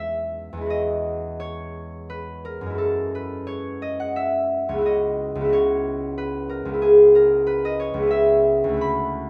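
A fingerpicked concert harp rings out up front as the sole voice in this serene, graceful classical solo cut from a longer piece, drifting in a rubato 3/4 at about 89 BPM in E major across a span from C#2 to B5, its Emaj9, F#m9, C#m11 and E6/C# harmonies set in light reverb over 9.3 seconds.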